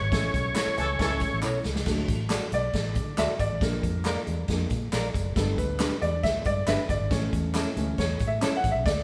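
Recorded by a band playing live in one room, this uptempo 1960s-style soul piece at 137 BPM carries the natural ring of a moderate stone room. Cut from a longer piece, it feels uplifting and danceable, moving in straight 4/4 through A, D, Bb, G and back to A. Up front, a gritty, overdriven tonewheel organ with chorus vibrato and a percussive third-harmonic attack states a brief melody, while a distant horn section adds a short second line and the band hits an accent leading into a drum fill at 1.4 s. From 1.9 s the woody, slightly detuned upright piano takes a solo through to the end. Beneath it sit a dark, foam-muted fingered electric bass, a punchy big-band drum kit with crash, hi-hat, kick and snare, and a background layer of tambourine, maracas and group handclaps. A clean, scooped semi-hollow guitar adds stabs with spring reverb.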